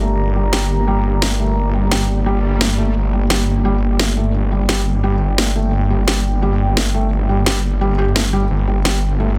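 A snarling, growling distorted saw bass sits up front on a low G, driving this tense, aggressive dark technical drum and bass at 173 BPM in G minor, joined by a cracking, layered electronic snare from 0.5 seconds, a felt-muted upright piano playing soft, intimate arpeggios through a low-pass filter and dub echo, a deep, moody ambient pad holding sustained chords with chorus and reverb, and a brief electronic swell in the background at 2.4 seconds, all in a dense, heavily limited mix with light reverb.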